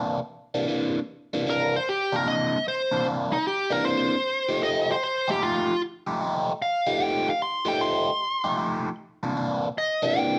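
A smooth, overdriven lead guitar takes the melody from 1.5 seconds, singing up front over a swaggering, soulful blues shuffle at 152 BPM with a swung eighth-note feel. Beneath it, a compressed, overdriven electric guitar colored by phaser drives the riff from the start, moving from C9 to F9 and back to C9. A moderate studio reverb gives both guitars a bit of room in this short excerpt cut from a longer piece.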